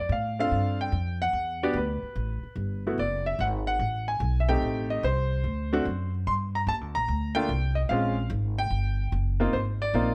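Jazz excerpt with a cool, late-night mood and a swung feel, where a clear, natural concert grand piano carries the melody up front over an acoustic upright bass played pizzicato with a woody tone, both sounding throughout in light reverb as the harmony moves from a rootless Bbmaj7 through shifting sus and minor colours to a brief chordless stretch near 8.7 seconds before settling on Ab6.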